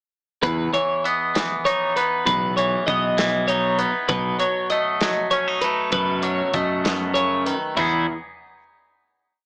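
A bright, compressed twelve-string electric guitar carries this short, playful and wistful math rock and midwest emo piece in 6/8 at 65 BPM, picking an up-front ostinato over a twangy electric guitar's rolling fingerstyle arpeggios bathed in spring reverb, a growly, overdriven fuzz bass locked to the kick drum, and a mid-forward studio drum kit with a punchy kick, medium-tuned snare, splash cymbal and toms, all moving from E5 through B7 before settling on a closing Emaj7 at 7.8 seconds, heard through a lightly reverberant small-speaker sound.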